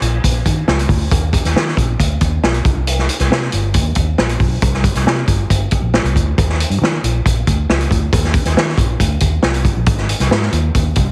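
Joyful and warm, this short cut from a longer uptempo 1960s-style soul piece runs on a straight 4/4 groove carried by just bass and drums throughout. The vintage drum kit sits up front with a medium-tuned snare, tight kick and hi-hat in a mid-forward, rolled-off studio-room sound, while the vintage muted fingered electric bass is dark, round and punchy, with a foam-muted, amped tone ranging from G1 to Eb3. The mix is dry and heavily compressed, giving it a vintage radio quality.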